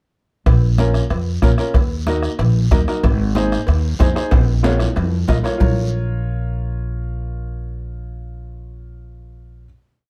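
At 0.5 seconds a short, passionate and driving cumbia in Bb minor kicks off at 186 BPM. A thumpy, up-front pizzicato upright bass on gut strings plays a cumbia bass figure under a soft-beater bombo with rim, bright off-beat congas in the background, ringing cowbell and timbales, and a raspy guiro. A clear upright piano, its action noise audible, adds rhythmic triad chords over a Bbm, Ebm, Ab progression. A drum fill from 4.3 seconds leads at 5.6 seconds into a final chord held by bass and piano, all in a dark, dry production.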